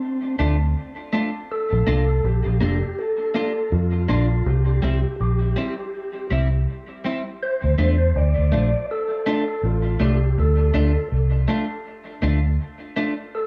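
Swung sixteenths at 81 BPM in 4/4 drive this serious, hypnotic roots reggae piece in D minor, cut from a longer recording, where a round, foam-muted vintage electric bass sits up front beneath a dark, compressed clean electric guitar carrying analog chorus and dub echo, while a mellow, flute-like percussive tonewheel organ with key click, fast rotary speaker and dub echo carries the melody from 0.0 s over Dm, Bb and C chords, the echo-heavy small-room mix bathed in moderate spring reverb and a faint mains hum.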